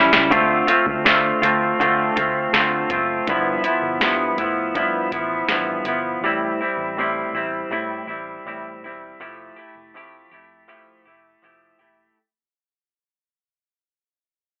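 A soft vintage rhythm box sets a straight 81 BPM pulse in 4/4, opening with a short drum fill before its deep kick, crisp snare and metallic hi-hats sit up front until about 6.0 seconds. This wistful, hazy slice of indie and bedroom pop in D dorian moves through Dm7, G13, Am7 and Fmaj9, with a fade-out running from 0.3 seconds to the close. A semi-hollow electric guitar carries the accompaniment up front, its clean, picked, compressed tone colored by subtle chorus and vibrato. Beneath it, a vintage muted fingered electric bass stays in the background, dark, round and punchy with a foam-muted, amped character. The whole piece has a dry, gritty hardware sound with a telephone-like narrowness, lifted only by a light reverb, and it is cut from a longer piece.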